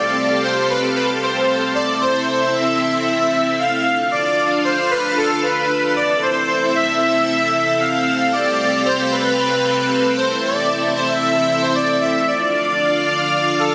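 Cinematic and nostalgic, this 114 BPM synthwave fragment in A minor, cut from a longer piece, sets a soft, airy, detuned supersaw melody with tape echo over lush, vintage string-machine chords thickened by ensemble chorus, moving through Fadd9, Am and Dm beneath a moderate plate reverb and a dense, heavily limited modern master.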